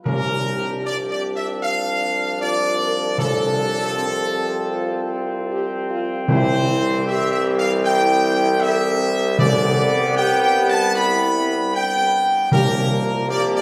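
Heard in a reverberant church or concert hall with a long, wet recital-hall reverb, this short classical brass passage is cut from a longer piece and sounds triumphant and regal in a steady, straight 4/4. A bright trumpet section carries the melody up front. A mellow French horn section sits in the background with light vibrato, sustaining chords alongside a trombone section. A clear, vintage-toned tuba with light vibrato holds a low C as the bass, while timpani played with medium mallets on plastic heads add weight on their own C. The harmony moves from a rootless Bb over C to C at 6.3 seconds, then G over C at 9.4 seconds and Bb5 over C at 12.5 seconds, ringing on until the passage breaks off.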